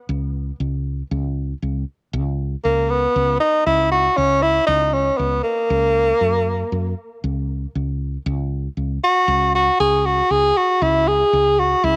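Captured as a home recording on cassette in a small room with light reverb, this brooding, driving progressive instrumental piece moves at 118 BPM in 7/4 in C# dorian, tuned to A4 = 435 Hz, as a woody, dark, round hollow-body fretless electric bass opens at 0.1 seconds and a clear, breathy tenor saxophone with vibrato and scooped notes enters at 2.6 seconds to carry an up-front, jazz-style solo melody over chords that shift to F#/C# and then C#sus4.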